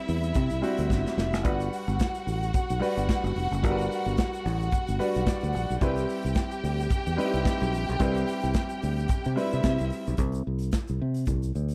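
A dry, close studio sound frames this celebratory, danceable disco excerpt at 110 BPM in 4/4, with a light swing on the sixteenths. Up front, a modern acoustic drum kit with a punchy kick, medium-tuned snare and hi-hat sits in a pumping room, joined by a growly, direct fingered electric bass, while a grainy, bright tube shaker stays in the background. A clear, intimate baby grand piano with audible action noise carries the accompaniment, and a bowed string section with vibrato and a smooth top plays a second line touched by slapback echo. The harmony moves from Cmaj7 to Gmaj7 and back to Cmaj7, with a drum fill near 0.9 seconds and a piano fill around 4.7 seconds. At 10.2 seconds the piano and strings stop, leaving bass, drums and shaker to carry a brief chordless passage before the cut.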